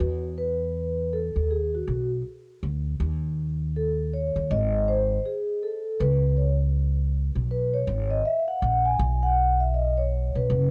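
Relaxed and warm, this 80 BPM jazz-hop excerpt in E major swings its sixteenths over 4/4 as a mellow, ringing vibraphone with soft mallets and slow motor vibrato takes a solo, while a woody, thumpy pizzicato upright bass with gut strings sits up front beside it, all in a small room with light reverb and worn, warbling cassette-tape pitch drift.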